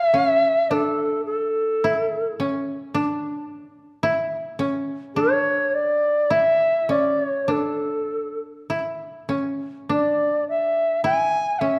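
A dark, warm production set in a moderate concert hall with a 1.9-second reverb frames this calm, austere piece of Japanese chamber music, cut from a longer work and moving freely in rubato at roughly 50-55 BPM in 2/4. An airy, reedy shakuhachi carries the melody up front between A4 and G#5, its tongued notes marked by chiff and vibrato. Beneath it, a dry, woody koto plucked with fingerpicks holds a low second line from C#4 to E4 throughout the 11.8 seconds.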